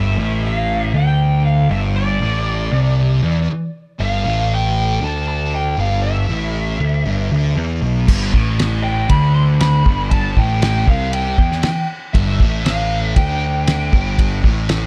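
A straight 4/4 pulse at 118 BPM drives this hazy, hypnotic psychedelic rock passage in G mixolydian, cut from a longer piece, where a thick, double-tracked fuzz guitar riff with phaser and a punchy, overdriven picked bass sit up front beneath a dark lead guitar melody through a small cranked amp colored by wah, overdrive and analog delay, before a cloth-damped, thuddy drum kit with a fat snare, tight kick and dark cymbals joins at 8.1 seconds in a dry, small room.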